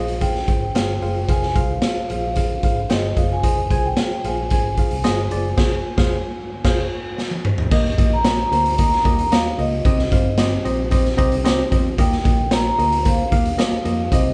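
A live-in-one-room band sound fills a large studio with moderate reverb in this joyful, uptempo 1960s-style soul excerpt at 112 BPM in 4/4. Mellow soft-mallet vibraphone carries the melody with a slow motor vibrato, over a worn, slightly out-of-tune tine electric piano lightly overdriven through a combo amp, and a dark, foam-muted fingered bass that sounds round and punchy. The up-front garage drum kit is gritty and saturated, with a medium-tuned snare and a rolled-off top; the band hits accents from 5.6 s, and a drum fill at 7.2 s carries the tune out of an F minor opening into a passage that moves through Eb and C minor.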